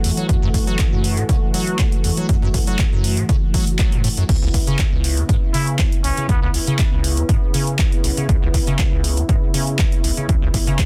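Driving and raw, this short acid house passage moves at 120 BPM in a straight 4/4, set in C# minor with tuning at A4 = 437 Hz, and shifts from F#m7 to C#m7 at 4.3 seconds. A squelchy, resonant acid bass built from a square wave carries the riff, its filter sweep and fast-attack, decaying notes roughened by tube saturation and vintage 12-bit sampler grit, and it pumps against the beat. Above it, a detuned sawtooth pad holds soft-attack sustained chords, treated with chorus and the same pumping motion. The punchy analog drum machine supplies overdriven crash cymbal, handclaps and hi-hat, while an electronic kick enters at 0.3 seconds, overdriven and sitting up front as the loudest part. Briefly, from 5.5 to 6.5 seconds, a trumpet with a straight mute slips in with a nasal, breathy, whispered solo line touched by light vibrato and scooped notes, trailed by dub echo. The mix has light reverb and a dense, heavily limited modern master.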